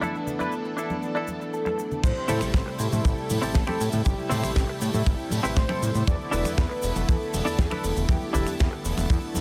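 A straight 4/4 groove at 119 BPM in A minor drives this groovy, sensual nu-disco excerpt, where close, hard-hand congas and cabasa, a bright, twangy direct-recorded clean guitar riff with lush chorus, a smooth detuned sawtooth pad with sidechain pumping and tape echo, and a vintage string machine ensemble with 12-bit sampler grit hold the opening E7sus4 until a thick, mellow unison lead with vibrato enters at 1.5 seconds and the drop at 2.0 seconds brings in a fat, detuned sawtooth bass with a filter sweep, a dry, tight kick up front, and a damped 70s kit with a fat snare, finger snaps, crash and low-passed hi-hats, all moving through Am7 and back to E7sus4.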